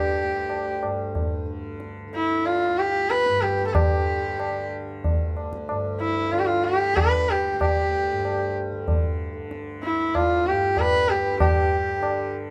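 A nasal, gliding bowed sarangi sings a longing, introspective Hindustani melody in raga bageshri over a buzzing, shimmering tanpura drone on D, with low-tuned, short-ringing tabla joining at 0.5 seconds in a straight 3/4 that starts near 94 BPM and gradually speeds up, all captured close and detailed with light reverb in this fragment of a longer piece.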